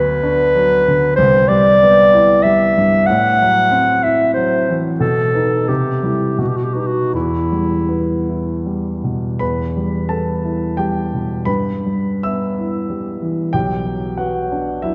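Lyrical and tender, this fragment of a romantic classical duo for clarinet and grand piano moves in a flexible, rubato triple metre. The clarinet sings the melody with a mellow, smooth tone, set up front in a classical style, and carries the line from the opening until 8.6 seconds. A warm baby grand piano supplies present, polished accompaniment across a broad register, then continues alone to the close at 14.9 seconds. The harmony drifts through seventh chords and a half-diminished colour before settling on E minor, and the phrase is restated in a second pass that ends on B minor. A lush concert hall reverb and a dark production give the duo a soft, enveloping glow.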